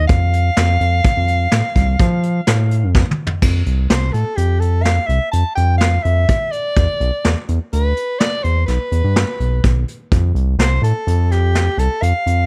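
Dry and close, with little reverb, this short cut from a longer progressive instrumental drives along at 126 BPM in 7/4 with an intricate, straight feel. A smooth-topped soprano saxophone carries the jazz-style melody with vibrato, over a round, deep analog bass whose wave-folded sawtooth and sine tone evolves beneath it. A vintage brush kit with dark cymbals and a punchy kick plays a fill from 3.0 to 3.4 seconds into the second section, where the harmony moves from an open, chordless start to Em7 at 6.8 seconds and F at 10.1 seconds.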